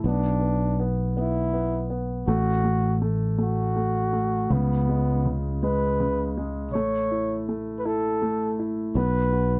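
Pop in a slow, swaying 6/8 at 54 BPM counted in dotted quarters, this short passage from a longer piece feels tender. A mellow flugelhorn carries the melody from 0.1 s, played in a jazz-style solo voice with light vibrato and a smooth top end. Beneath it, a clear, polished baby grand piano supplies the accompaniment in its middle register, while a sustaining fretless electric bass adds a bright, growly, directly amped low end. All three parts sit up front in a dry, close 1970s-style studio sound touched with light reverb. The harmony moves from Bm through F#m/A, C#5 and A before settling on B5 near 9.0 s, and the tuning sits slightly below standard at A4 = 439 Hz.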